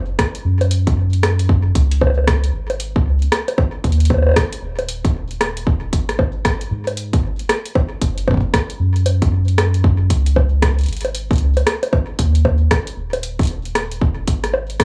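Eerie and intricate, this short IDM excerpt swings its sixteenths as a round, deep analog bass with a dark, sustained triangle-and-sine tone opens alone before a booming analog drum machine of bongos, metallic hi-hat and rim click, tape-echoed, joins a heavy electronic kick at 0.2 seconds, all up front in a dry, gritty hardware recording with small room ambience.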